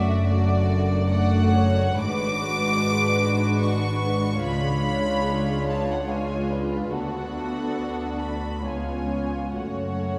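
Heard from further back in a reverberant scoring stage, this excerpt from a slow, elegiac romantic movement for string orchestra in 3/4 at 64-75 BPM, with a yearning rubato feel, sets an intimate, lightly vibrato first violin melody over a pure, floating second violin line, woody, lush violas, a distant cello section in the background and dark, soft-attacked double basses, all bowed sul tasto through chords that begin on D/F# and settle on F#m.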